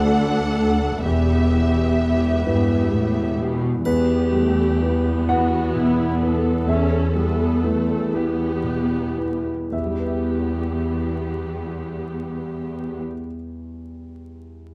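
Vinyl crackle sits over a moderate recital-hall reverb, with close, detailed microphones that bring out the texture of each section. This cinematic, emotional orchestral film cue in a rubato 6/8 feels longing and bittersweet, opening on a D chord that moves to E minor. A distant, dark, woody violin section carries the melody in the background, shadowed by a lush, expressive second violin line, while a focused, up-front viola section and a smooth, even cello section give the harmony a rich, vibrato-laden body. A soft-attack double bass section with portamento adds depth beneath, and an up-front vintage grand piano with a deep bass, the loudest part, anchors the accompaniment. The music begins to slow gradually at 2.4 seconds, the violins drop out at 3.3 seconds, and a bright triangle enters in the background at 3.9 seconds. After the violas and cellos stop at 13.0 seconds, the piano plays alone to the end of this fragment of a longer piece.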